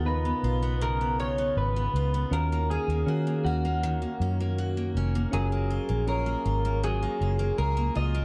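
A hazy, dark-toned production steeped in moderate spring reverb gives this short cut from a longer indie pop and bedroom pop piece a wistful glow as the chords move from Db13 to Ebm7 to Gbmaj9. An electric guitar through a small old amp carries the melody with a slightly broken-up, compressed tone, analog chorus and slapback echo. Beneath it, a bright, full-bodied picked steel-string acoustic guitar with subtle chorus and warbly pitch drift blends with soft, mellow electric-piano-like synth keys colored by chorus and cassette tape, while a vintage foam-muted fingered electric bass sits round, punchy and up front.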